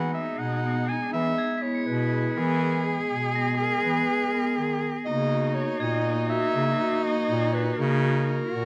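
Urgent yet hypnotic, this contemporary chamber excerpt moves in a brisk 11/8 at 243 eighth-note beats per minute, shifting from Emaj7 to D#m at 5.1 seconds. A mellow, soft-attacked clarinet carries the melody over a dark, boxy bowed cello line with vibrato, while a smooth marimba with medium hard mallets supplies arpeggios and an up-front bass clarinet anchors the low end. A vintage-toned woodwind section holds sustained chords in the background, and bell-like crotales shimmer from 1.4 to 7.5 seconds, all captured with close, detailed microphones and light reverb.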